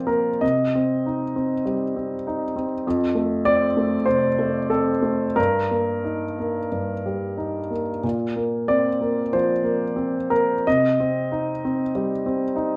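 Neoclassical minimalist piano, intimate and tender, moving in a rubato 4/4 that drifts between 82 and 101 BPM across this short passage cut from a longer piece. A solo upright piano, woody and up front with audible action noise and long sustain, spans F2 to Eb5 and carries a slapback echo as it moves through Cm, F, Eb/G and Bbsus2 before settling back on Cm at 10.7 seconds. Light reverb surrounds the rough home demo mix, tuned slightly high to A4 = 441 Hz.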